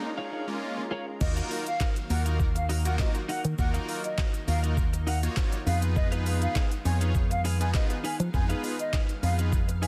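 Confident and energetic, this dance-pop fragment opens with a short build-up of a fat, detuned polysynth, a lush chorused pad pumping in the background and a clean, warm twelve-string electric guitar riff, before the drop at 1.2 seconds brings in a distant, mellow silver concert flute melody with tape echo, a hollow, organ-like FM bass up front and a smooth R&B drum kit with a knocking kick, deep snare, handclaps, shaker and crash, all inside a dense, heavily limited modern master.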